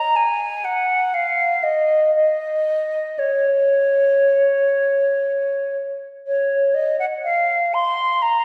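Heard from further back in a concert hall with a long, wet reverb, this brief cut from a longer baroque-style classical fantasia features a solo silver concert flute, its airy, straight tone and crisp attack moving in grave, introspective rubato through the whole of its 8.4 seconds.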